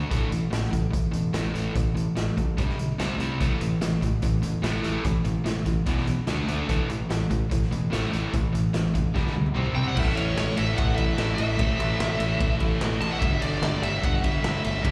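A raw garage drum kit sits up front, its punchy kick, medium-tuned snare, hi-hat, ride, crash and toms sounding gritty and saturated in a small, pumping room with a rolled-off top. Beside it, an overdriven semi-hollow guitar picks out a hollow-bodied riff with slapback echo, anchored by a growly, direct fingered electric bass, giving this energetic, anthemic hard rock cut a driving straight feel built on A5, G5, C5, E5 and D5 power chords. A brighter overdriven electric guitar joins the riff in the background at 3.4 seconds, and a drum fill leads the first section into the next. At 9.8 seconds a bluesy lead guitar takes up a distorted, high-register melody, and at 10.0 seconds a double-tracked, high-gain guitar adds a further background riff, both carrying slapback echo. The whole performance comes across like a live gig heard through the venue's PA, with a touch of concert-hall ambience, and it is cut from a longer piece.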